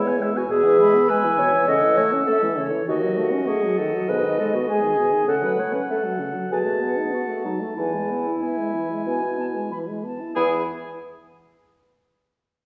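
Moving in a rubato 4/4 at 91-102 BPM, this quick classical-period movement for wind quintet in E major sounds spirited and cheerful, a passage cut from a longer piece. An airy, straight-toned concert flute carries the melody over a roomy oboe second line, while a vintage-sounding clarinet and a warm French horn fill in the accompaniment and a bassoon with light vibrato anchors the bass; all five play together from the start until about 10.6 seconds. The ensemble is heard from further back in a wet scoring-stage reverb, with the harmony moving from E through A, G#m and B7 before returning home to E at 7.8 seconds.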